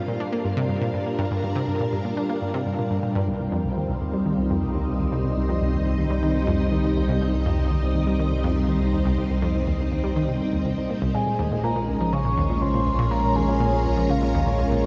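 A lush string machine ensemble opens this mysterious stretch of sequencer-driven space music, holding slow-blooming sustained chords through an ensemble chorus. Almost at once, an analog pluck riff with a bright, detuned sawtooth edge joins in, coloured by chorus and tape echo. At 3.3 s the harmony moves to C minor and a deep, round analog bass enters underneath. At 11.1 s, as the chords shift again, a soft octave-layered synth lead appears high above, carrying a triangle-toned melody with vibrato, chorus and tape echo. The dark production is steeped in a huge ambient reverb that gives the steady, straight pulse an expansive sense of space, in this portion cut from a longer piece.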